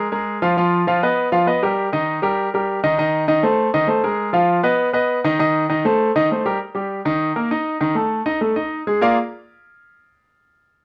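Sophisticated and danceable, this short jazz excerpt moves at a brisk 199 BPM in a straight 4/4 feel. A clear concert grand piano carries everything alone from 0.0 to 9.2 seconds, ranging from Eb3 up to F5 with a deep bass, polished tone and long sustain that sits up front in the sound. The harmony shifts quickly through colorful chords such as Ebsus2/F, G7alt, Adim/Eb and Am7b5/Eb before settling on Eb around 6.6 seconds and closing toward Bb7 at 9.0 seconds. A moderate studio reverb gives the instrument a sense of space. Cut from a longer piece, the passage feels like a glimpse into an elegant, lively performance.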